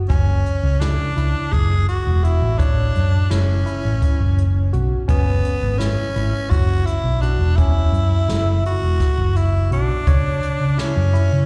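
A straight 7/8 groove at 168 eighth-note beats per minute drives this short, intricate and tense progressive instrumental in F# minor, cut from a longer piece. Up front, a round, punchy hollow-body short-scale electric bass, played with the fingers, anchors the dark low end. Beside it, a jazz kit played with brushes sits distant and roomy, with a boomy kick, a medium-tuned snare and hi-hat. A raspy, gritty tenor saxophone carries the melody as a close-miked solo with light vibrato, colored by slapback and tape echo. In the background, a barky tine electric piano plays clean arpeggios through a combo amp, shimmering with medium tremolo and slapback echo. The harmony moves from F#m7 to C#m at 5.1 seconds, and the band comes across as a live gig heard through the venue's PA, wrapped in recital hall reverb.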